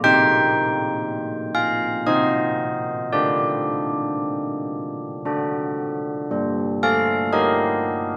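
Carillon bells ring out alone and up front, their bronze tone carrying a minor-third overtone and the strike of an iron clapper as they sound a solemn, wintry church-bell tune spanning G3 to G5. The classical piece moves at a slow 58 BPM in 3/4 in G minor, passing from C minor to a suspended D chord at 3.1 seconds, then D, and settling on G minor at 6.3 seconds. A moderate scoring-stage reverb surrounds the bells throughout this brief excerpt cut from a longer piece.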